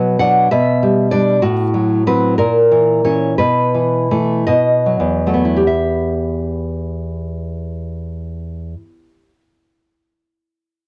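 In a rubato 6/8 that drifts between 48 and 66 BPM and slows from 0.5 to 5.7 seconds, this intimate, passionate romantic fragment in E minor features a solo fingerpicked nylon-string guitar, dark and deep with fresh strings, audible finger squeak and a cassette-tape colour, sitting up front in a small room. The harmony moves from Bm through G/B and diminished chords to B7sus4 and B7, then resolves to Em as a second section opens at 5.7 seconds. The guitar falls silent at 9.4 seconds.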